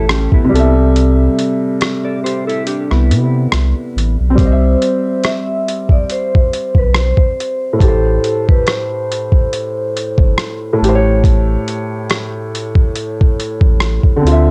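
A vintage vibraphone played with medium mallets carries the melody from 4.4 to 10.3 s, its metallic, ringing tone softened by a slow motor vibrato, a band-limited edge and a touch of tape echo. This is a mellow, cosy lo-fi hip hop passage cut from a longer piece, in C major at a relaxed 70 BPM in 4/4, with a 56% swing on the sixteenths and tuning set slightly low at A4 = 438 Hz. A felt-muted upright piano with thin felt sits up front as soft, intimate accompaniment with a warm, cassette-coloured voice, while a deep, thick sub bass with a saturated triangle tone and fast attack holds the low end. The boom bap sampler-style kit of hi-hat, thumpy kick and rim click sounds compressed, pitched down and gritty with 12-bit sampler character, and a dark, clean, fingered electric guitar adds a second line through the opening 4.2 seconds with analog chorus and tape echo. A break runs from 0.9 to 4.4 s before the harmony moves through C, Am7 and back to A7. 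The whole recording is dry and gritty, with a hardware and cassette-tape character and little reverb.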